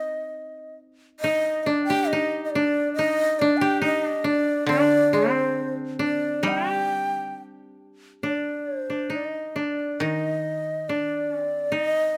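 A breathy, end-blown bamboo shakuhachi carries the melody up front in this austere, calm fragment of Japanese chamber music, moving in a free rubato around 68 BPM over a woody, fingerpicked koto second line, while a lower, softer koto accompaniment enters at 4.7 seconds, all captured by close, detailed microphones in light reverb.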